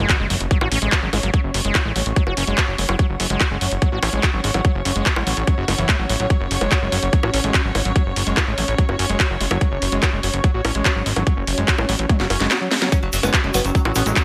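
Intense and hypnotic, this excerpt of psychedelic trance in F# minor drives at 145 BPM, with a tight electronic kick and a garage kit of cracking snare, hi-hat, handclaps, toms and bongos up front beside a fat, detuned sawtooth analog bass. A squelchy, screaming acid riff with distortion, chorus, cassette tape and dub echo pumps in the background from the very start alongside a very quiet electronic impact, and moments later a swarming ring-modulated drone and a blurred granular cloud pad join it there. A drum fill at 12.1 seconds ushers in a woody, plectrum-plucked oud with phaser and a grainy egg shaker at 12.9 seconds.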